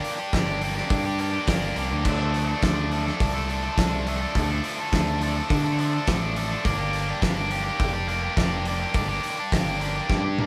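Indie rock at 104 BPM with a moody, cool air, built on a biting, double-tracked overdriven guitar riff up front over a loose, gritty acoustic kit in a pumping room with a fat snare, punchy kick and dark cymbals, joined at 0.3 s by a bright, punchy picked electric bass, as the band plays live in one room with light reverb, moving through Gm, Dm and Gm7 before a drum fill at 10.1 s in this short cut from a longer piece.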